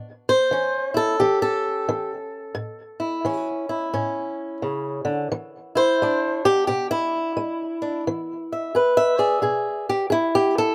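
A fingerpicked acoustic guitar carries this short piece of acoustic country blues on its own, sitting up front with a boxy, warm tone. The mood is gritty and swaggering, driven by a swing feel in common time. Across its 10.7 seconds the guitar covers a broad range from low bass notes to bright upper strings, moving from an A7 chord to E7 at 5.3 seconds. The sound is dry and close, captured outdoors with little reverb and an absence of room ambience, which leaves every pluck plain and direct. Cut from a longer performance, the passage feels like a single musician settling into a loose, confident groove.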